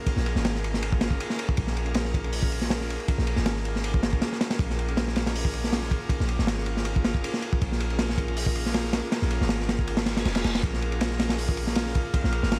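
Drum and bass with a jungle edge, this dark, raw clip moves at 159 BPM in Bb minor, resting on a single Bbm7 chord throughout its 12.6 seconds. A crunchy breakbeat kit sits up front, its saturated, gritty sound built from a punchy kick, a medium-tuned snare, hi-hat and dusky ride cymbals with a rolled-off top. Beneath it, a deep, boomy 808-style bass with a fast attack and decaying notes holds the low end between F1 and Bb1. An airy, breathy pad sustains chords from Bb3 to Bb4, softened by chorus and roughened with vintage 12-bit sampler grit. A reverse cymbal rises in the background at 10.0 seconds, and at 11.6 seconds a glassy texture of drifting overtones enters, calm and washed in its own reverb. Vinyl crackle and a light small-room ambience lend the whole clip a worn, lo-fi patina.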